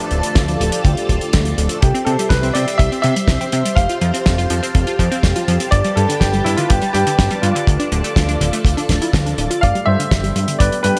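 An excerpt of danceable, romantic italo disco at 123 BPM opens on lush string-machine chords with ensemble chorus and dark, brassy synth stabs in the background that drop out at 1.8 seconds and return at 9.6 seconds, over a fat, saturated sawtooth bass, a dry, tight kick and a damped kit whose fat snare carries gated reverb, while a baby grand piano melody and a punchy, detuned unison pluck arpeggio with digital delay enter near 1.8 seconds, all moving through Dm, C, Fadd9 and Gadd9 in a bright 1980s-style digital production with moderate plate reverb.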